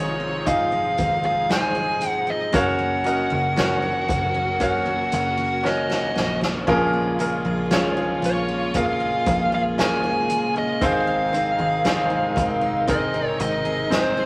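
A dark, fuzz-distorted lead guitar sits up front in this melancholic, heartbroken pop ballad, carrying the melody in its upper register over a bright concert grand piano with deep bass and short sustain. Also playing from the start are a lush, woody string section holding sustained chords in the background, a jumbo steel-string acoustic guitar picking fresh-sounding arpeggios complete with finger squeak, and a punchy, foam-muted fingered electric bass kept low. A soft-mallet drum kit enters at 0.5 seconds, with a boomy kick, medium-tuned snare, hi-hat and dark splash cymbal giving a natural, hall-like feel. A drum fill at 5.6 seconds leads into the move to Bbm7, in a slow, straight 4/4 progression that also passes through Fm7/Ab, Gb and Ab. Moderate studio reverb and a layer of vinyl crackle lend the cut-from-a-longer-piece recording a crackling patina.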